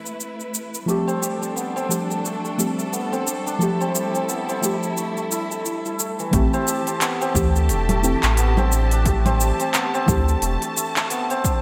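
A relaxed 88 BPM groove in 4/4 carries a 58% swing on the 16ths, driven by an organic electronic drum kit of congas, handclaps, shaker and crisp hats that sits up front with a tape-softened, small-room character. This meditative organic downtempo piece in A minor opens on Am7, with a deep, mellow chord stab pumping against the beat through chorus and digital delay beneath a lush, bowed symphonic string section holding sustained chords with vibrato. At 0.9 seconds a hammered santur joins with shimmering, ringing arpeggios, roughened by vintage 12-bit sampler grit and echoed by digital delay, as the harmony moves to G9sus4. At 6.3 seconds the music returns to Am7 and a punchy, overdriven electronic kick enters in the background alongside a round sine sub bass that pumps up front until 10.6 seconds. A moderate plate reverb and bright 1980s-style digital production give the whole a polished sheen.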